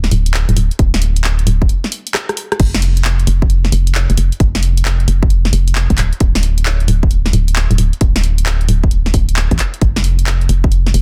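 A hollow, organ-like FM bass opens this bouncy, soulful two-step UK garage excerpt at 133 BPM, sitting dark and up front beside a house kit of crash, handclaps, hi-hat, rim click and a cracking snare, all swung on the sixteenths. A punchy electronic kick joins at 0.8 seconds, tape-warm and close, before a short break from 1.7 seconds carries a drum fill into the drop again at 2.6 seconds. The sound is dry, dense and heavily limited, with the bass's fast-attack, decaying notes leading the mix.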